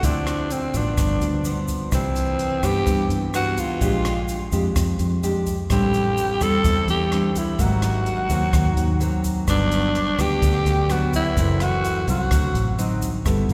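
A straight, relaxed bossa nova groove in 4/4 comes from a compact cocktail drum kit of hi-hat, rim click and punchy kick, with a grainy tube shaker tucked in the background and a round, foam-muted fingered electric bass underneath. Fingerpicked nylon-string guitar in a classical style moves through chords such as Dm9, Cmaj9 and F#m7b5, while an up-front tenor saxophone leads the romantic melody with a breathy subtone, raspy growl, scooped notes and vibrato until 12.8 s. The piece sits in a wet church reverb, and this passage is cut from a longer performance.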